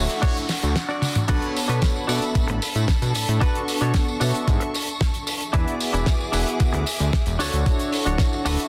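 This nu-disco excerpt opens with a background noise sweep over mellow synth brass, rich chamber strings, a clean electric guitar riff and a fat analog bass, all set on a Dmaj7 chord. A drum fill arrives at 1.0 seconds, and the drop lands at 1.3 seconds, settling into a sleek, groovy 4/4 at 113 BPM in B dorian, moving through Bm7, E7 and back to Dmaj7. The thumpy electronic kick and the thick, detuned sawtooth bass sit up front, while the acoustic kit adds a dry, fat snare with hi-hat, tambourine, toms and crash. The guitar is bright and twangy, recorded direct with subtle chorus and digital delay. The dark, round synth brass carries chorus and delay, and the bowed strings bring smooth vibrato with vintage 12-bit sampler grit and sidechain pumping. The mix has little reverb and a dense, heavily limited modern master.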